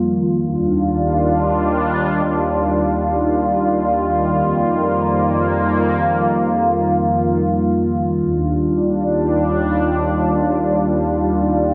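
A sweeping, resonant pad of detuned sawtooth and sine tones plays alone and up front from 0.0 to 11.7 s in this dreamy, floating hip hop fragment in free time and Eb major, its slow attack, filter swell and long release, colored by chorus and analog delay, drifting through Ebmaj7, F7sus4 and back to Ebmaj7 inside an echo-heavy mix with a moderate spring reverb.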